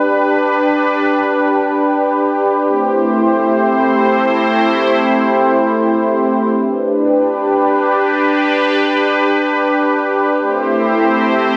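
A sweeping, resonant sawtooth pad carries this spacious, ethereal hip hop fragment on its own, drifting in free time with a bright, detuned, airy character, slow attack and long sustained release, thickened by chorus and sitting up front. Its chords move between G and Am7, and the harmony restarts on G at 6.5 s for a second section. Light digital reverb surrounds it, while a worn cassette-tape quality adds a warbling pitch drift, in a brief piece cut from a longer work and tuned to A4 = 443 Hz.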